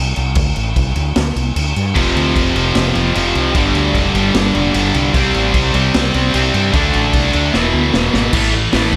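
A raw garage drum kit sits up front with a punchy kick, medium-tuned snare and gritty, saturated small-room sound, driving this angry punk rock excerpt at 151 BPM in a half-time feel alongside a round, dark fretless bass, while three bright picked guitars (tight distorted, hollow-body overdriven and scooped high-gain double-tracked) join at about 2.0 seconds over chords moving from D5 through F5, G5 and C5 and back to D5, reaching E7 under a drum fill at 7.5 seconds before landing on A5.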